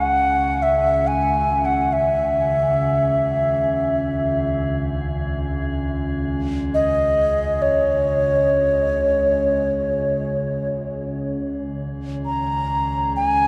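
A bright, airy low xiao carries the melody up front, its straight, tongued bamboo tone close-miked and trailed by tape echo as it moves between C#5 and A#5 in C# dorian. Beneath it, a metallic, inharmonic drone with a slow attack and long release sustains an eerie low bed, thickened by chorus and its own reverb, while soft, shimmering crotales ring very quietly until 4.1 seconds. This free-time world meditation music sits in a vast, echoing space with a cassette-tape grain, giving the cut from a longer piece a spacious, haunting mood.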